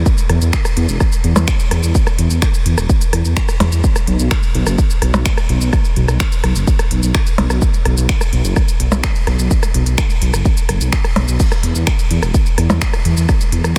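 A straight 4/4 pulse drives this dark, melancholic melodic techno excerpt, anchored by a heavy, layered electronic kick and a techno drum kit whose smooth hats sit among snaps, rim clicks, shaker, ride and crash cymbals, and small percussion blips. Underneath, a menacing detuned saw bass fills the low end from the first moment, its unison sawtooth tone evolving through a filter swell, thickened by tube saturation and sidechain pumping while it sits up front. Light reverb lends the whole a digital sense of space.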